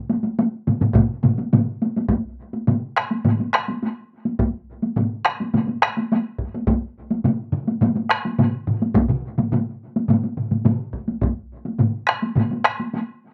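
Driving and ceremonial, this cut from a longer traditional Japanese taiko piece moves at a straight 105 BPM in 4/4, with four up-front acoustic taiko ensemble parts. One group played with hard sticks opens at 0.1 s with a compressed, saturated punch. At 0.7 s it is joined by a close, hard-stick group and a heavy-stick group carrying the sound of a live room, and at 0.9 s a hard-stick group set in a small room follows. The playing shifts into a new section at 2.1 s, with light reverb over an outdoor recording.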